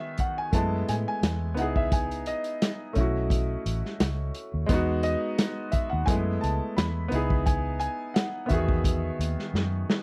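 An 87 BPM groove in 4/4, lightly swung on the sixteenths, drives this short slice of lush 1970s-style soul in E major, romantic and smooth in mood. A polished concert grand carries the melody high in its range, present and rich with deep bass, while a second, clear and intimate grand supplies the accompaniment below, its action noise audible up front. A bell-like, delicate celesta is barely audible in the opening moment only. The vintage drum kit enters at 0.2 s with hi-hat, a tight kick and a medium-tuned snare, sounding muffled, lo-fi and rolled-off on top in a small room, and it closes with a fill at 9.5 s. A dark, round and punchy foam-muted fingered electric bass joins at 0.5 s, as the harmony cycles through Emaj7, F#m11, C#m9 and B9sus4 before settling on Emaj9. The whole is a dry, close 1970s-style studio recording with little reverb.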